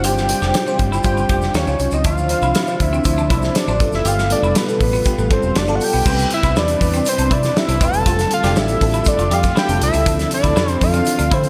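Breezy and urban, this polished 1980s jazz-funk pop excerpt in straight 4/4 puts a fat, detuned analog lead with chorus and slapback echo up front over a dreamy FM electric piano with a soft pad layer, phaser and ensemble chorus, a very quiet vintage string machine holding sustained chords, a clean picked electric guitar riff in the background, a dark, round, foam-muted fingered bass and a modern studio drum kit with a tight kick, bright cymbals and a pumping room, with a grainy, distant tube shaker entering at 0.1 s, while the mix sits in a lush hall reverb that lends a big arena sound as the harmony moves from G7sus4 through Ebm9, Dm9 and G9 to Cmaj7 at 6.1 s.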